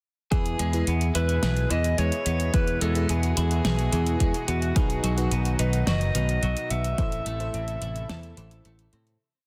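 A breathy, distant alto saxophone carries a motif-based melody through this romantic, nostalgic synthwave piece at 108 BPM in E major, framed by a bright, twangy twelve-string guitar arpeggio, a lush detuned unison pad and dreamy FM electric-piano stabs. Underneath, a dark overdriven picked bass drives eighth notes, an 80s-style pop drum kit with a fat snare and metallic hats keeps the backbeat, and a punchy electronic kick drops out at 7.1 s as the whole piece fades from 6.2 s to 9.2 s.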